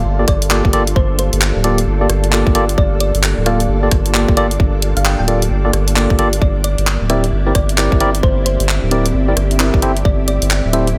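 A deep, saturated sine sub bass sits up front from the start, its thick, sustained notes anchoring this late-night, soulful two-step UK garage excerpt at 132 BPM in 4/4, with a 62% swing on the sixteenths in G dorian. A tight, layered electronic kick and a garage kit of handclaps, rim clicks and warm hi-hats drive the groove, with the kick dropping out at 10.2 seconds. Clean, bright tine electric piano stabs ring out through an analog delay, while a round, gentle thumb-piano-like FM pluck carries the melody in the background with chorus and delay. Behind them, a silky vintage string machine holds chords through a phaser and ensemble chorus, and an ethereal, airy pad drifts above with detuned unison voices and its own reverb, both pumping to the sidechain. The harmony moves from Gm9 to C9 at 6.4 seconds, then to Am7, all set in a light reverb.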